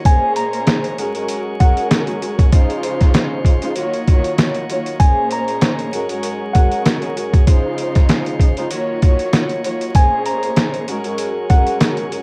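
A swung, 97 BPM boom-bap hip-hop groove in 4/4 comes from a gritty, pitched-down sampler-style drum kit, its thumpy kick, medium-tuned snare and hi-hat compressed and up front, while lush bowed strings with woody vibrato and a lightly overdriven, shouting tonewheel organ through a stopped rotary speaker hold dark chords cycling from Bbm7 through Ab7sus4, Dbmaj7 and Ebm7. Over this moody bed a clean, fingered electric guitar plays a high melody from 0.1 s, the strings, organ and guitar all filtered and tape-softened. The dry home cassette sound carries vinyl crackle across this short excerpt of a longer piece.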